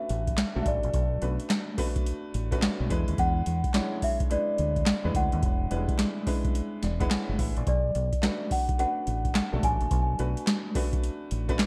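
New jack swing R&B at 107 BPM in B dorian with a 64% swing on the sixteenths, this bouncy, confident excerpt sets a bell-like celesta melody with digital delay over a warm baby grand piano that adds a fill at 6.5 seconds, a round, dark dub fingered electric bass, and a booming, overdriven analog drum machine with deep kick, tonal snare, metallic hats and handclaps treated with gated reverb, all moving from Bm7 to E7 and back within a bright 1980s-style digital production.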